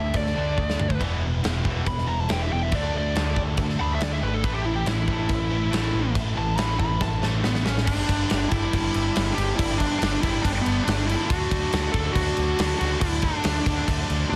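A dark, high-gain lead guitar soaked in plate reverb and tape echo solos over a driving, heavy hard rock groove at 140 BPM, where a punchy, round picked bass and a big, up-front acoustic drum kit with soft-clipped kick and snare and brief fills drive layered distorted and double-tracked overdriven rhythm guitars, a tight distorted guitar dropping out at 7.9 s as the chords move to G, while a silky, detuned analog string pad hovers very quietly underneath.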